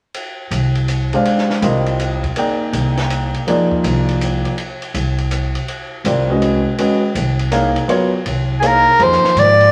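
A swung 3/4 pulse at 163 BPM opens this cool, intense modal jazz excerpt in F dorian, where a compact cocktail drum kit with dark cymbals, a high-tuned snare and a tight kick starts at 0.1 seconds, a woody pizzicato upright bass enters up front at 0.5 seconds, and a warm, present grand piano comps over Fm9 and Abm9 before a clear, breathy soprano saxophone with light vibrato and scooped notes steps forward for a brief solo at 8.6 seconds, all set in a large studio reverb with vinyl crackle.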